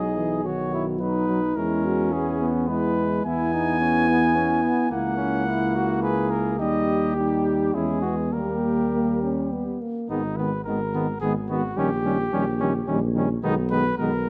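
In a rubato 3/4 at 107 BPM, this classical brass quintet moves with a solemn, heroic bearing, cut from a longer piece. The mellow trumpet carries the melody up front, its soft attack and light vibrato set against a warm, smooth-topped flugelhorn on the second line. Beneath them, a bright, close-miked trombone and a mellow French horn fill out the accompaniment. A roomy tuba with light vibrato anchors the bass. The harmony drifts from B and E toward G# minor, settled from 3.3 s, and a new passage at 10.1 s opens on G#m and moves through D#7/A# before closing on G#m/B. Detailed close microphones capture the ensemble within a moderate scoring-stage reverb.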